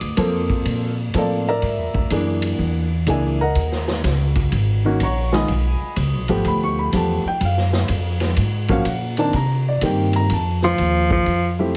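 A relaxed, swinging small-group jazz excerpt at 124 BPM opens with up-front baby grand piano comping through chords like Gm11, E7#11 and Gbmaj7, over woody, thumpy pizzicato upright bass and a distant, roomy drum kit with boomy kick, snare, hi-hat and ride. At 10.6 seconds a clear, punchy alto saxophone cuts in with a forceful, vibrato-laced note, standing out front just before the fragment ends. The whole sound carries light reverb and a heavily compressed, radio-like character.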